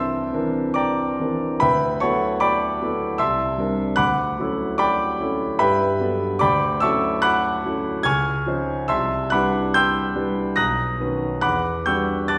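Classical impressionist solo piano in D major, this short passage from a longer piece moves in a rubato 3/4 at roughly 69-78 BPM, its mood serene and hazy. A concert grand plays alone for the full 12.4 seconds, its tone clear and natural with a deep bass, ranging from B1 up to A#6 and sitting up front in the sound. The harmony drifts through rich extended chords, opening on C9 and D69 before settling onto Dmaj9 and Gmaj9. Around 8.0 seconds it slips through C#maj9, Cmaj9 and Bmaj9, coming to rest on Em11 at 11.4 seconds. A wet recital hall reverb of about 1.5 seconds, as heard in a church or concert hall, blurs the chords into a luminous glow.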